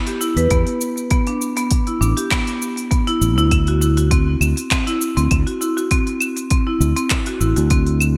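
Peaceful and earthy, this organic downtempo excerpt sets woody, bright hard-mallet marimba arpeggios through a digital delay over a tube-saturated fretless electric bass, a deep electronic kick and an electronic kit of claves, handclaps, smooth hi-hat and shaker in gated reverb, with a light swing, chords moving from E5 to Asus4 at 1.1 seconds and D9 at 3.5 seconds, all framed by 1980s-style digital production and moderate plate reverb.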